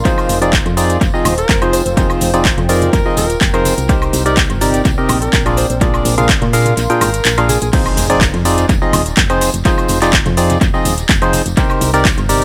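Awash in echo, light reverb and digital ambience, this excerpt of soulful, bittersweet piano house moves at 125 BPM in F dorian. A round, dark FM bass and a hollow, up-front organ stab both pump against a punchy, overdriven kick and a house kit of metallic hats, claps, crash, cabasa and woodblock, with soft-handed tambourine and congas tucked behind. A warbling, nostalgic tape-like pad hovers very quietly beneath as a breathy alto saxophone with vibrato plays a brief jazz-style solo from 1.4 s, both parts stopping at 7.7 s, where, after the kick briefly drops out, the drop arrives with a very quiet electronic impact while bass, stab and drums carry on over Fm7 and Cm7.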